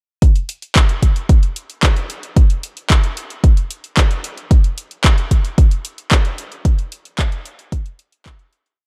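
Dark, digital ambience surrounds this short, danceable italo disco piece, which carries a nostalgic glow at a straight 112 BPM in 4/4. An overdriven electronic kick sits up front with a punchy, layered four-on-the-floor pulse that runs from 0.2 to 8.4 seconds. Beside it, a house drum kit supplies a disco machine beat of closed hi-hats and handclaps, its bright hats also pushed through overdrive and sitting lower in the mix than the kick. The whole piece is a single verse built only from these two drum parts, giving it the stripped, produced feel of a dance floor groove. A fade-out begins at 5.9 seconds, and the kit carries on alone briefly after the kick stops before the track closes at 8.8 seconds.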